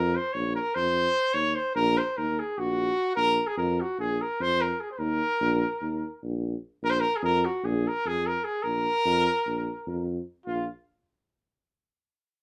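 Bittersweet yet fiery, this Balkan folk passage, cut from a longer piece, moves in a straight-feeling 9/8. A mellow trumpet carries the melody in a classical style, its light vibrato giving the line a gentle shimmer. Beneath it, a punchy tuba holds down the bass with a similar light vibrato and the same classical poise. Both horns play from the start until 10.7 seconds, sounding up front yet roomy, set in a moderate studio reverb. The harmony circles between Bb and Eb power chords with a brief turn to Eb minor, and a new section arrives at 10.5 seconds, shortly before the horns finish.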